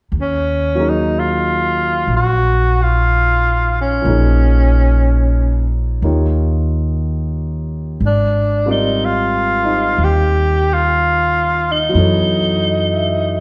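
A wet, large studio reverb places this short jazz ballad a little further back in the room, lending an intimate, melancholic glow to a slow 61 BPM swing in 4/4. The upright bass starts at 0.1 seconds, plucked and woody with an up-front presence, and a breathy tenor saxophone enters a moment later to carry the melody in a whispered, subtone voice with vibrato, soft attacks and scooped notes. From 0.8 seconds a concert grand piano adds quieter accompaniment, smooth and vintage in tone, with deep bass and a touch of audible action noise. The harmony moves from Ebm11 through Bbm7 and Eb9 to a lingering Abmaj9 before settling on Gbm7. Cut from a longer piece, the passage feels like a late-night confession, with the saxophone's hushed, vintage character at its center.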